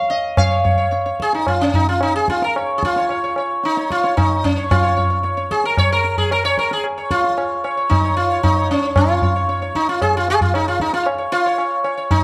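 Meditative and serene, this short excerpt from a longer Hindustani classical performance is set in raga bhupali on Db, moving in a straight 4/4 at around 112 BPM and speeding up throughout. The plectrum-plucked acoustic sitar carries the melody from the opening moment, ranging from Db4 to F5 with a buzzing, round tone and a shimmer from its sympathetic strings. It sits up front in the mix, while the acoustic tabla joins at 0.1 seconds with a low-tuned, ringing sound heard close to the microphones. Detailed close miking captures the grain of both instruments, and a light reverb adds a gentle sense of space.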